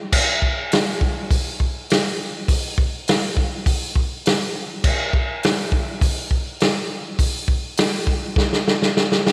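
A straight 4/4 rock groove at 102 BPM, played on a vintage acoustic drum kit with punchy kick, medium-tuned snare, hi-hat and crash cymbal, carries a swaggering, gritty mood through this short cut from a longer piece. The kit sits up front with a natural small-room character and a rolled-off top, bathed in a moderate echo chamber reverb with a 2.5 s tail. A drum fill arrives at 8.4 seconds and runs to the end at 9.3 seconds.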